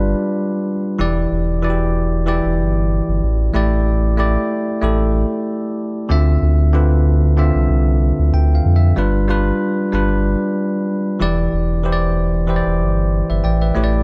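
A lightly swung sixteenth-note groove in 4/4 drives this hypnotic, sultry afrobeats passage, cut from a longer piece. A bell-like, bright tine electric piano sits up front with clean, direct chords moving through G7, Em7, A7sus4 and Dm9, adding a short fill at 8.0 seconds, while a deep, sine-toned sub bass doubled at the octave anchors the low end with a fast attack and sustained notes. The sound is dry and gritty, with the audible artefacts of lossy compression.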